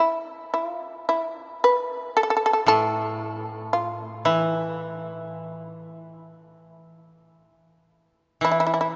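The rhythm is rubato and unhurried, loosely following a slow 4/4 pulse at 57 BPM in this meditative, austere Japanese traditional excerpt, tuned slightly below standard pitch at A4 = 439 Hz. A shamisen opens alone at 0.0 seconds, carrying the melody in a middle register from E4 to B4. Its plectrum-plucked tone is bright, percussive and buzzing, coming from a fretless neck, and it sits up front. At 2.7 seconds a koto enters beneath it with a low accompaniment from A2 to E3, played with fingerpicks and sounding dry and woody, mixed a little softer than the shamisen yet still close. The recording sits in a deep, cathedral-like space with a long reverb tail that lends the phrases a solemn stillness through to the cut at 9.0 seconds.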